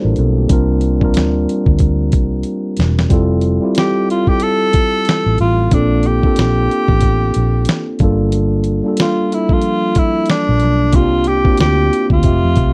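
A breathy, whispered tenor saxophone enters at 3.8 seconds with scooped notes, vibrato and a slapback echo, carrying an intimate jazz-style solo line over this smooth, mellow neo-soul R&B groove with a swung sixteenth-note feel. Beneath it, a clean tine electric piano lays down lush ninth chords, while a dark, foam-muted fingered bass adds round, punchy low end. A gritty, compressed sampler-style drum kit with a thumpy kick and fat snare comes in at 0.2 seconds and plays a short fill at 2.5 seconds, all captured in a dry, close 1970s-style studio sound.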